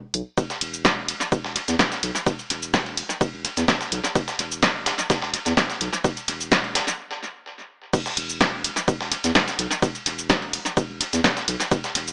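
Hypnotic and sparse, this minimal techno excerpt runs at 127 BPM in a straight 4/4, driven by an overdriven, punchy electronic kick and a dry analog drum machine whose crash, hi-hat, shaker and snare pass through tape echo, both sitting up front. A gritty, compressed breakbeat sampler-style kit, with high-passed hi-hat, ride and snare, stays in the background, while a deep, thick, saturated sine sub bass pumps under sidechain. The echo-heavy mix carries a moderate spring reverb and a small-speaker sound, and after a stop from 7.0 to 7.9 seconds the drop lands at 7.9 seconds.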